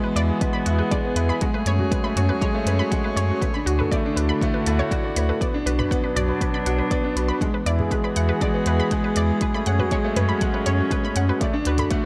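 A steady, straight 4/4 pulse at 120 BPM drives this hypnotic, moving piano and strings electronica, cut from a longer piece, with an overdriven electronic kick sitting up front from 0.4 seconds alongside a minimal click kit of clicky hi-hats and toms. A round, sine-like sub bass, deep and up front, holds the low end with sidechain pumping, while a woody upright piano with long sustain plays a riff through digital delay. A dark string quartet sustains chords with a nasal, reedy gut-string tone, light vibrato and a smooth top, one bowed player per line in a period chamber style. A lush, detuned sawtooth unison pluck spins bright, warbling arpeggios with a vintage edge, carrying its own sidechain pumping and digital delay. The harmony cycles through E, F#madd9, D and Bm under light reverb, giving the loop a searching, emotive pull.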